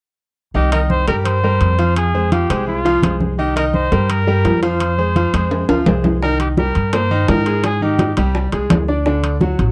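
This salsa piece, cut from a longer one, moves at 169 BPM in C minor with a driving, danceable energy and a tuning slightly below standard at A4 = 436 Hz. A bright baby grand piano sits up front, brilliant and intimate, with short sustain and audible action noise, while a woody, dark upright bass plays pizzicato on gut strings with a thumpy, prominent presence. A clear trumpet carries the solo melody with vibrato and a punchy, vintage pop-style edge, entering at 0.6 s and finishing at 8.2 s. Ringing, low-tuned congas sit in the background and metal-shell timbales add a small-room sound. After a drum fill, round, compressed, saturated bongos played with soft hands join at 6.2 s as the harmony moves from Cm7 through Fm toward Abmaj7 and D. The dry, close 1970s-style studio sound carries light reverb.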